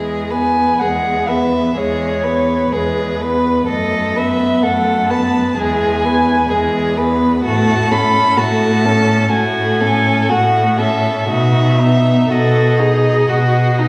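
A reverberant recital hall surrounds this tender, serene slow romantic movement for string quartet, recorded in a church or concert hall with a wet decay. In E major and 4/4 at roughly 60-65 BPM, the rubato pacing lets each phrase breathe, the harmony passing from E through B5/F# and F#m/A before resting on B at 11.3 seconds. The melody belongs to a dark, woody first violin placed up front, entering at 0.3 seconds with vibrato and a smooth upper register between B4 and B5. Beneath it, a second violin with a rich tone, soft attack, expressive phrasing and gliding portamento adds a gentle second line, while the viola supplies smooth, even accompaniment. The cello anchors the bass from E2 to B2 with a focused, vibrato-laden sound that also sits close to the listener. This passage is cut from a longer piece.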